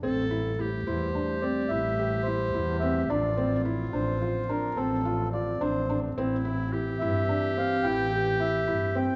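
Pensive and hypnotic, this contemporary chamber piece in A minor moves in a brisk 11/8 at 215 BPM in eighths, drifting through Am7, Dm7/A and C6/A in a recital hall's moderate reverb with a dark, warm production. A felt-muted upright piano spins soft, intimate arpeggios with audible action noise, a bowed double bass sits up front with boxy vibrato and portamento, and a bright clarinet traces a second line with a soft attack over sustained chords from a clear, close-miked woodwind section in the background. At 0.9 seconds a reedy, round accordion takes the melody up front, and this short excerpt is cut from a longer piece.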